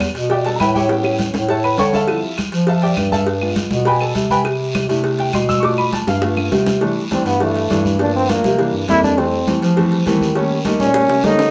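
Heard from further back in a moderately reverberant studio, this lively, danceable Afro-Cuban jazz fragment is cut from a longer piece. A worn concert grand piano with deep bass and short sustain carries the opening as a solo from 0.0 s to 6.8 s, while a mellow bass clarinet with light vibrato and scooped notes holds down the low end throughout. Bright congas, tight high-tuned cowbell and bongos, and a raspy guiro drive the groove. Woody claves sit in the background until 6.5 s. A clear, vintage-toned trombone takes the melody up front from 7.1 s, over jazz harmony with rich extended chords and brief percussion fills along the way.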